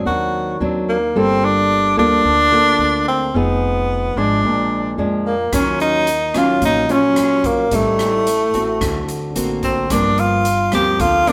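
The recording sounds like a band playing live in one room, wrapped in a wet studio reverb. This is a sophisticated, sunny bossa nova excerpt at 110 BPM in 4/4 with a straight feel. A small, fingerpicked nylon-string guitar sits up front with the accompaniment, while a woody pizzicato upright bass with steel strings holds the low end. From 0.1 s a bright tenor saxophone carries the solo melody in a jazz style, up front with a light vibrato. A big-band drum kit enters at 5.5 s, airy and polished with a punchy kick, adding hi-hat, kick drum and rim click. Beneath it all, the harmony moves through rich chords such as Gm9, Ebm9 and D7b13 before arriving on Gm7.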